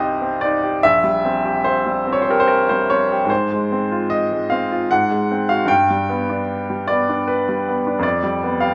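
A clear, up-front baby grand piano opens this brooding, passionate romantic character piece in C minor, moving in a rubato 3/4 at 75 BPM across a range from Bb1 to G5 with long natural sustain and light reverb, its harmony passing from Cm through C7/Bb, Fm/Ab and Ab7 to G and G7/F in a short fragment cut from a longer work.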